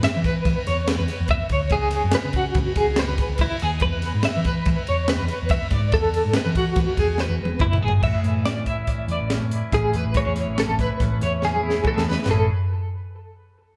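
Recorded live in one room with light reverb, this is a playful, intricate slice of math rock and midwest emo in A major, moving at 142 BPM in 5/4 with a straight feel. A bright, compressed twelve-string electric guitar plays arpeggios up front with tremolo and analog delay, over a dark, round hollow-body short-scale bass and a crisp fusion drum kit with a high-tuned snare and punchy kick that plays fills at 7.2 and 11.4 seconds. At 8.0 seconds the harmony lands on Amaj7 as a scooped, twangy second electric guitar joins quietly in accompaniment.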